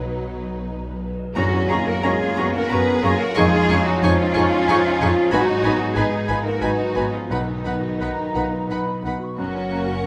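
Cinematic film score for orchestra, tender and moving, in a rubato 3/4 at 90 BPM in F# major, where a clear, distant violin section carries the melody over a warm studio violin line, a viola section with portamento, a harp's ringing arpeggios and a piano with deep bass and short sustain. Rich, lush cellos and double basses anchor the bass from the opening. A roomy oboe slips in at 1.3 seconds, and at 1.4 seconds the band accents as an airy flute ensemble, a dark, very quiet clarinet, mellow French horn chords and a dry tam-tam join, all under a moderate scoring-stage reverb.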